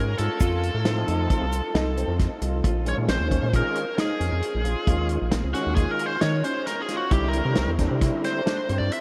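This brooding, intricate progressive instrumental, cut from a longer piece, opens with a biting, overdriven lead guitar, a warm concert grand piano playing arpeggios through analog chorus and tape echo, and a rubbery, hollow square-wave bass sitting up front with a dark, resonant filter pluck. It moves at 134 BPM in an uneven 5/4 with a straight feel, in Bb minor. A soul drum kit with a tight kick, medium-tuned snare, hi-hat and a rolled-off top comes in almost at once, and a grainy egg shaker sounds very quietly between 0.4 and 2.5 seconds. A gritty, thick tonewheel organ with chorus vibrato and a fast rotary speaker adds accompaniment in the background. At 2.6 seconds the bright, picked guitar launches into a solo as the harmony moves from F7 to Bbm7 and later to C7. The whole mix is dreamy and soaked in a huge ambient reverb.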